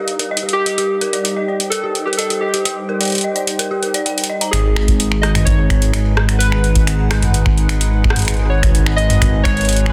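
IDM excerpt with a glitchy, eerie mood, where warbly lo-fi synth keys carry the melody over a hollow, flute-like pad holding sustained chords, joined at first by a dark detuned synth bell's inharmonic arpeggios through digital delay and a very quiet flickering, grainy texture, while a filter sweep runs over the pad through the opening 4.5 seconds. A booming analog drum machine sits up front with finger snaps, metallic hats, rim clicks and toms, its snare softly clipped. At 4.5 seconds the harmony shifts and a rumbling, saturated saw bass arrives, followed by a deep, tape-warm electronic kick at 4.9 seconds, all in a dense, heavily limited mix with light reverb.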